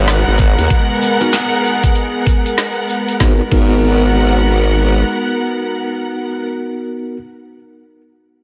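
A saturated, wobbling formant-sweep bass and a smooth detuned analog pad with sampler grit and sidechain pumping open this funky, playful glitch hop excerpt in G# minor at 96 BPM with a 16th-note swing, joined at once by a distant, lush bowed string section, a very quiet downlifter, a grainy egg shaker and an overdriven drum kit with a woody snare and bright hats, before a knocking, up-front electronic kick lands at 0.4 seconds and a mellow tine electric piano plays filtered, delayed stabs on a G#m9 chord from 1.2 seconds, lingering after the drums stop at 3.7 seconds.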